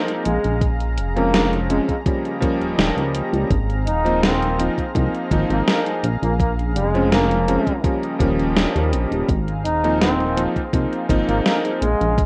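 Nostalgic and faded, this vaporwave excerpt drifts at 83 BPM in Ab major, circling a Bbm7, Eb7, Ab69 progression under a rough cassette-demo haze. A breathy, distant flugelhorn carries the jazz-style melody with light vibrato and tape echo, over a clear, clangy electric grand piano with chorus and tape echo and a lush, airy pad of sustained chords. A glossy chorused synth bass and a gated 80s drum machine with gated-reverb snare and hi-hat sit up front, joined by a thumpy electronic kick entering at 0.6 seconds.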